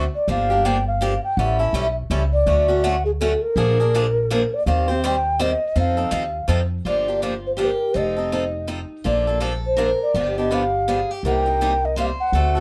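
A boxy, freshly strung swing guitar with audible finger squeak and a thumpy, woody gut-string upright bass open this virtuosic, swinging jazz manouche excerpt in 3/4, as a breathy, mellow clay ocarina carries the melody with vibrato and tongued, expressive phrasing, joined at 6.9 s by a bright picked steel-string acoustic guitar on a second line, all set in a small room.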